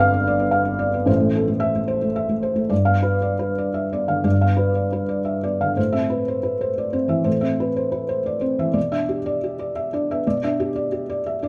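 A felt-muted upright piano plays alone from 0.0 to 11.5 s. Its thick felt gives it a dark, intimate tone placed up front, and the action noise is audible. This reflective, wistful neoclassical minimalist piece is in A minor and 3/4 at a rubato 108-123 BPM, moving from G7 and Am into a new passage at 2.7 s that passes through Amadd9 to Em7/B, all surrounded by a moderate large-studio reverb of 1.2 s in a clip cut from a longer piece.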